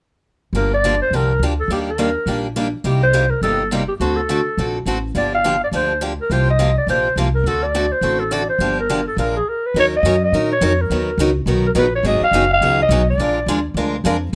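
With a light swing at 209 BPM in 4/4, this fiery, virtuosic snippet of jazz manouche sets a bright, boxy picked steel-string acoustic guitar and a woody, thumpy pizzicato upright bass on gut strings beneath a raspy, growling clarinet lead with scooped notes, light vibrato and slapback echo, all captured close and detailed in light reverb, until a stop at 9.5 seconds carries the tune from G minor into Eb minor at 9.7 seconds.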